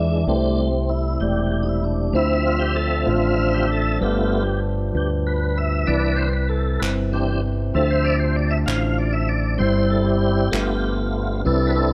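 A lightly overdriven tonewheel organ with slow rotary speaker and chorus vibrato takes the lead in this hopeful, uplifting slow gospel excerpt in 6/8 at 64 BPM in C major, carried by a round, punchy fingered electric bass up front, a mellow, clean tine electric piano, a tight French horn section in the background, and crisp group handclaps from 6.8 to 10.8 seconds, all under light reverb as the chords move from Am7/C through Dm7, G7 and Cmaj7 before closing on C/G and G7.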